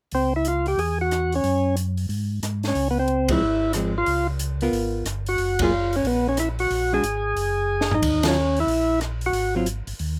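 A percussive tonewheel organ opens with a thick, lightly overdriven melody through a slow rotary speaker, over a mellow, round organ bass with chorus vibrato and an acoustic jazz kit with dark cymbals, a high-tuned snare and a boomy kick, in this soulful, bluesy soul jazz organ trio cut from a longer piece at a brisk, swinging 182 BPM in Db major. A dark, clean hollow-body guitar joins at 3.3 seconds with picked accompaniment as the band hits accents, and the harmony moves from Dbmaj7 through Gbmaj7 to dominant chords on Bb and Eb. A short drum fill arrives around 7.7 seconds before the excerpt settles on Ab5, all set in light reverb.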